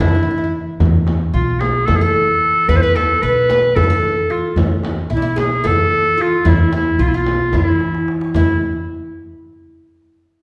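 Turkish makam ensemble music, festive and passionate, moves in a lively 7/8 and is cut from a longer piece. A bright, vintage-toned clarinet carries the melody up front in a classical solo style, its soft attack giving each phrase a rounded start. Beneath it, a fretless, plectrum-plucked oud with double strings adds a woody second line, while a pizzicato upright bass with steel strings anchors the low end. A clay-shelled darbuka with natural skin sits in the background alongside a deep frame drum played with hard hands, both sounding distant in a large room, and a drum fill arrives at 7.8 seconds before a new section begins at 8.3 seconds. The whole ensemble rings in the lush reverb of a recital hall, giving the performance the spacious air of a church or concert hall.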